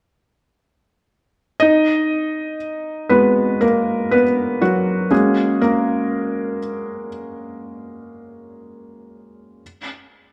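Pop in a heartfelt, emotional mood at a slow 60 BPM in 4/4, cut from a longer piece, where a solo felt-muted upright piano, soft and intimate with audible action noise and placed up front, plays accompaniment from 1.6 to 9.6 seconds, moving from G#m7 to G#9sus4 within a moderate scoring-stage reverb and a dark production.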